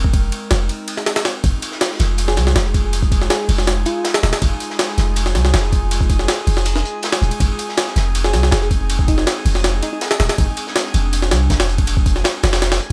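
Raw and atmospheric, this drum and bass excerpt in F dorian runs at 161 BPM, with an overdriven, pitched-up jungle sampler kit of thumpy kick, high-tuned snare and ride sitting up front beside a deep, mellow 808-style bass, while a crunchy, saturated breakbeat kit of hi-hat and snare joins in the background at 1.4 seconds after a brief break. A warbling, nostalgic lo-fi pad holds sustained chords moving between Ab and Fm7, and from 2.2 seconds a drifting, glassy harmonics texture floats behind it. A sparkling, bell-like FM electric piano with chorus, tremolo and dub echo plays short phrases at 2.3 and 8.2 seconds, all set in a digital ambience.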